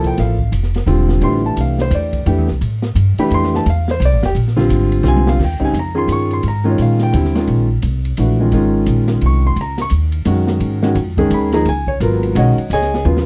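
A hypnotic, open modal jazz waltz moves at 172 BPM in 3/4 with a swung eighth-note feel, in F major and tuned slightly below standard pitch at A4 = 436 Hz. A concert grand piano comps throughout, intimate and up front, with deep bass and audible action noise, stepping through Fmaj9, Bb9, Eb9sus4 and Db9sus4 chords. An upright bass plucked on steel strings anchors the bottom with a woody, warm tone, sitting up front. Further back sits an acoustic jazz kit in a small room, dark and smooth with dark cymbals, a rolled-off top, a medium-tuned snare and a boomy kick, adding brief fills at 5.0 and 13.1 seconds. The dry, close sound recalls a 1970s studio session, and this short passage is cut from a longer piece.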